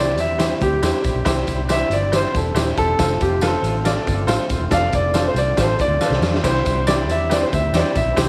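Soaked in a moderate echo-chamber reverb with small-room ambience, this joyful, uptempo 1960s-style soul excerpt at 139 BPM in F major features an intimate, up-front concert grand piano soloing on the melody throughout, backed by a woody, slightly detuned upright piano, a very quiet, lightly overdriven tonewheel organ with fast rotary sustaining chords, a round, foam-muted fingered electric bass, a punchy raw garage drum kit entering at 0.2 seconds with a fill at 6.0 seconds, and a jingly tambourine in the background.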